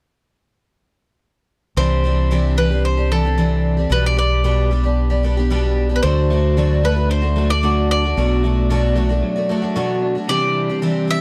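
A dry, close 1970s-style studio sound frames this jangly, nostalgic rock fragment, cut from a longer piece, where a shimmering, octave-doubled twelve-string acoustic guitar sits up front alongside a bright bowl-back mandolin carrying the melody over Cadd9, G/B, D and Bm7. Underneath, a deep dub fingered electric bass gives a round, dark, up-front bottom until it drops out at 9.2 seconds for a short break. From 6.0 seconds, an electric guitar through a small old amp adds a compressed, slightly broken-up riff.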